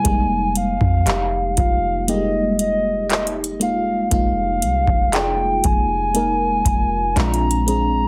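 A hollow, woody clarinet-like synth lead with chorus, delay and vibrato carries the longing melody up front in this moody contemporary R&B excerpt at 59 BPM in F minor, over a mellow FM electric piano with chorus and phaser, a booming analog drum machine with deep kick, metallic hi-hat and handclaps, a soft, round 808-style bass, and a delicate, bell-like celesta with delay tucked in the background from 1.1 to 6.9 seconds, with the Fm11 harmony moving to Bb7 at 7.2 seconds in a mix with little reverb and a heavily compressed radio sound.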